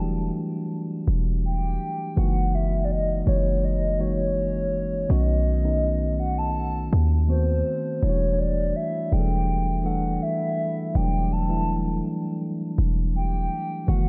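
Set in a straight 4/4 at 82 BPM, this short cut from a longer contemporary R&B piece moves at an unhurried, late-night pace with a moody air. A deep, boomy 808-style bass sits up front from start to finish, its sine tone carrying a noise layer and a fast attack that decays, ranging from E1 to D#2. A mellow tine electric piano supplies clean accompaniment between D#3 and A4, sounding as if heard through its own built-in speakers. Above them, a hollow, woody synth lead with a clarinet-like character carries the melody from C5 to A5, its soft attack, sustained notes and vibrato giving it a warbling, vintage, dark quality, further colored by chorus and a diffuse ambient delay. The harmony moves from Em11 through F#13, B9 and B7b9 before returning to Em11 at 8.0 seconds, all wrapped in light reverb and digital ambience.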